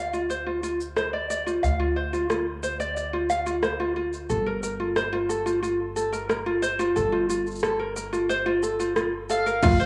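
Folktronica in G minor at 90 BPM, intimate and autumnal, with a light, fingerpicked ukulele playing up-front arpeggios through a low-pass filter and cassette tape while a woody, thumpy pizzicato upright bass on gut strings holds the low end and an overdriven organic electronic drum kit of congas, crash cymbal, rim click and shaker keeps time as the harmony moves from Dm7 to Gm9, all wrapped in wet spring reverb and small-room home cassette ambience, until a bright, round, double-strung picked mandolin enters at 9.3 seconds and a deep, overdriven electronic kick sits in the background from 9.6 seconds.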